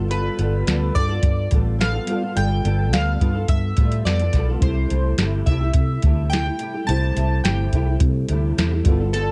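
Laid-back and sunny, this short indie and bedroom pop excerpt at 106 BPM in C major moves from G9 to C6 over a dry, dark production, with an overdriven vintage rhythm box of deep kick, crisp snare and metallic hats and a round, foam-muted fingered electric bass up front, a fingerpicked flamenco guitar with ensemble chorus and vibrato, a worn, slightly out-of-tune tine electric piano lightly overdriven in the background, and glossy, bright retro synth keys carrying the melody from 0.1 seconds through lush chorus and slapback echo.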